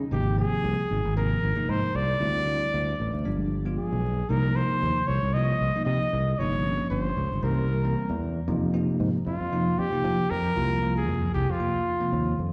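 Funky and intense, this jazz excerpt in F minor moves at 115 BPM in 4/4 with a light sixteenth-note swing. A mellow trumpet carries the solo melody up front, punchy and forceful with scooped notes and a smooth top, its tone treated with slapback and tape echo. Beneath it, a fingered electric bass sounds growly and amped, sitting close and direct from the very start at 0.0 seconds. A bell-like tine electric piano adds clean, bright accompaniment, moving through rich chords such as Abadd9, G7b9 and Cm7 before reaching F7(no3) at 8.5 seconds. The sound places the group on a live gig heard through the venue's PA, with recital hall reverb and a layer of vinyl crackle giving the short fragment a worn, atmospheric character.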